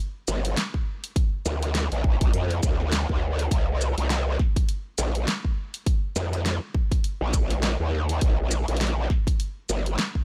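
A growling, saturated bass with chorus and a pop drum kit of fat snare, hi-hat and shaker open this playful, swaggering glitch hop cut in C minor at 102 BPM with a 16th-note swing, joined at 0.7 s by a punchy electronic kick, both drum parts carrying studio reverb, all up front over a digital ambience until about 10 seconds.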